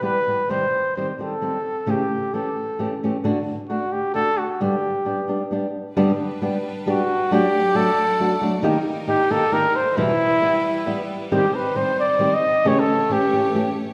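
In a 3/4 at 134 BPM in G major, this romantic, proud mariachi excerpt sets a mellow solo trumpet with light vibrato and a soft, classical attack up front over a fingerpicked flamenco guitar, finger squeaks audible, while a bright, lush violin section enters at 5.9 seconds with intense, bowed sustained chords, all carried by the reverberant bloom of a church or concert hall.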